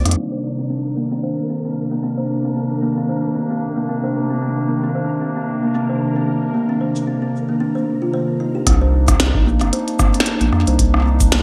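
A short drum fill opens this cerebral, eerie IDM piece in C minor at 113 BPM, with a hollow, flute-like pad sustaining a Cm9 chord and a grainy, flickering granular texture glimmering in the background. The glitchy drum kit swings its 16ths with a tiny snare, clicky hats, rim click and shaker, its tape-tinged sound given gated reverb and digital delay. A dark, woody kalimba plays ringing arpeggios through a low-pass filter and delay, and a filter sweep runs across it through the first section. At 8.7 seconds the texture stops, and a round, deep analog bass returns alongside a deep electronic kick drum for the closing section, which ends at 11.4 seconds. A moderate plate reverb and brilliant 1980s-style digital production frame the mix, with chorus and vintage 12-bit sampler grit on the mellow pad.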